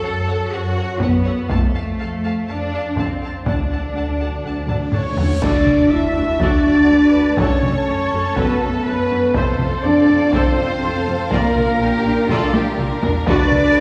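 Adventurous and triumphant, this cinematic orchestral film cue moves at 122 BPM in a straight 4/4, taken from a longer piece. From the opening, a distant, rich violin section carries the melody over a second violin line, a smooth viola accompaniment, mellow sustained French horn chords, and a bass of lush cellos and a soft-attacked double bass section, all bowed with vibrato. A taiko ensemble with hard sticks and a vintage, band-limited sound enters at 1.0 seconds, while a very quiet, dry timpani fill on hard mallets leads toward the turn. At 4.9 seconds a huge, very quiet reverse cymbal swells as an airy close-miked flute and tight trumpet stabs join the texture. At 5.4 seconds an impact, a burst of dark clash cymbals with concert bass drum, and a band accent open the second section, where a close sustained string section joins. The harmony moves through F#m, F and D, later reaching Bb before returning to D at 13.3 seconds, and the whole is set in a wet scoring-stage reverb that places the orchestra further back in the room.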